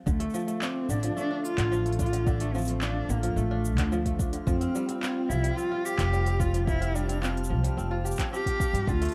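Playful and warm, this 109 BPM folktronica excerpt in F major sets ringing, fingerpicked kora arpeggios beside a dark, bowed cello melody with vibrato and vintage 12-bit sampler grit, over up-front pizzicato upright bass, a soft tape-toned electronic kick and a small-room electronic kit of handclaps, crisp hi-hat and shaker, while a warbly, detuned lo-fi pad with chorus enters at 0.8 s and a reversed, granular, dreamy texture drifts in behind it at 1.5 s, ahead of the move from Dm to Fsus2 at 4.5 s.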